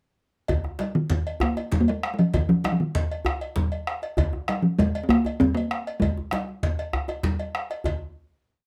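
Moderate studio reverb gives this short, driving West African drum ensemble piece in 12/8 an earthy character. The resonant talking drum sits close, dry and up front, playing motif-based call phrases from 0.9 to 7.2 seconds over a metallic, band-limited cowbell bell pattern, a round, compressed and saturated bombo, a medium-tuned djembe in a small room, and thick-skinned, damped congas played with hard hands. The ensemble closes on a final hit at 7.9 seconds.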